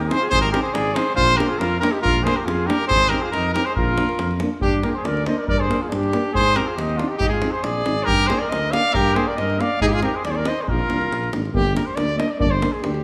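A mellow trumpet carries the melody up front in this festive, virtuosic Balkan brass band excerpt at 139 BPM in 2/4, with a flugelhorn adding a second line with light vibrato until 11.3 s, both sounding distant and roomy. Beneath them a tuba holds the bass with a soft attack, while a dark euphonium and a French horn supply accompaniment in the background, and a deep, saturated davul provides the percussion. The whole band sits in the wet reverb of a recital hall, and the harmony moves among Ab, Bb and Gm.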